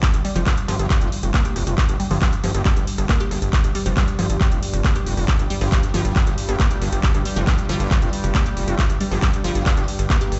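Set in a straight 4/4 pulse, this driving, intense peak-time techno excerpt puts a punchy analog kick up front beside a gritty, saturated, wave-folded synth bass with filter sweeps, joined by handclaps and pumping hi-hats from an analog drum machine, a squelchy, resonant blip pluck with phaser and delay in the background, and a chorused pulse-width drone that ducks beneath, all heard as if played through a big sound system in a bare room with a large reverb and a dulled top end.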